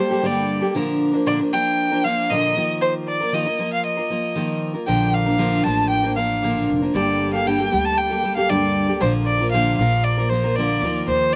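A straight 4/4 pulse carries this carefree, sunny pop excerpt, where a clear, focused bowed violin sings the melody with vibrato up front over a picked steel-string acoustic guitar with audible finger squeak, joined at 4.9 seconds by a woody, thumpy pizzicato upright bass on gut strings, all captured outdoors with a dry sound as the chords move through Gmadd9, Bb and Ebsus2.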